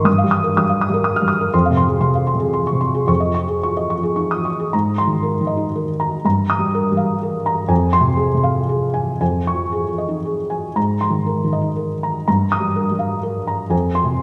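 A felt-muted upright piano opens this short passage alone, its thick felt giving each note a soft, dark, mellow tone with short sustain. The mood is tender and peaceful, a neoclassical minimalist piece in a gentle 3/4 lilt played with rubato. The piano sits up front and intimate, spanning a range from F2 to F6, while a moderate hall-like reverb adds a sense of space around it. The harmony circles through a recurring cycle of Ebadd9/G, Fm, Dbadd9/F and Abadd9, and a second section begins at 4.7 seconds. Cut from a longer piece, it runs to 14.2 seconds.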